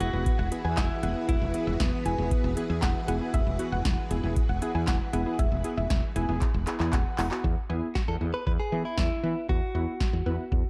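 Synth-pop at 117 BPM in a cool, melancholic mood, this straight 4/4 excerpt opens on an Eadd9 chord and pairs a bright, compressed clean electric guitar melody through digital delay, which returns at 8.0 s, with airy, warbling analog keys under chorus, shimmering string-machine violins in ensemble chorus holding sustained chords until 7.4 s, a soft, triangle-toned pluck second line carrying chorus and delay, a growly, woody fretless bass up front, and a punchy electro drum machine of deep kick, snare, metallic hi-hat and handclaps with a fill at 6.4 s, the mix sitting in a dark production with light reverb.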